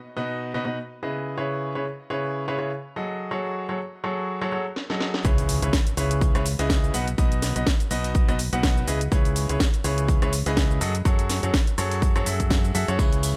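A clear, intimate baby grand sits up front in a studio reverb, its long sustain and audible action noise giving this energetic, bittersweet piano house excerpt a natural touch at 124 BPM in C# minor, with a light 16th-note swing. The piano opens alone with a riff through C#m7 and F#madd9, pumping against the sidechain and trailed by a digital delay. A house drum kit arrives with a short fill at 4.8 seconds: overdriven hi-hat, rim click and shaker, with a cracking, filtered snare re-recorded in a large room. The drop lands at 5.2 seconds with a punchy, overdriven electronic kick up front, a fingered electric bass that is warm, punchy and pumping, a very quiet electronic impact, and a very quiet acoustic kit of small-room hi-hat and medium-tuned snare layered beneath. A distant tambourine slips in from the background at 13.0 seconds, just before the excerpt cuts off.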